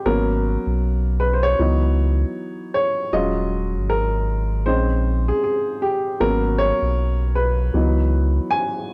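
A woody, vintage-toned upright piano leads this reflective lo-fi hip hop excerpt, playing short-sustained chords through Abm11, Dbm11, Ebm11 and Bbm11 with a cassette-tape tint. Beneath it, an up-front, deep and round sine sub bass holds sustained notes at a relaxed 78 BPM in 4/4, with a 60% swing on the sixteenths giving the fragment a nostalgic sway. Light reverb and a dry, gritty hardware sound with transformer saturation and tape colour frame this short piece cut from a longer work.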